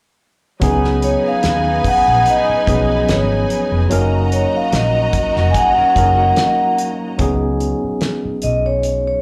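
A mellow, close-miked vibraphone played with soft mallets carries the melody from 1.0 s in this lush, smooth 1970s-style soul piece, heard as a live club gig through the venue's PA with moderate reverb. Beneath it, a bright tine electric piano with slapback echo, a round, foam-muted electric bass and a damped drum kit with a fat snare and tight kick keep a gently swung feel, while a rich bowed string section with vibrato adds a second line until 7.2 s. A dark, slightly broken-up guitar riff through a small old amp, touched with chorus and slapback echo, sits in the background from 5.4 s to 7.2 s.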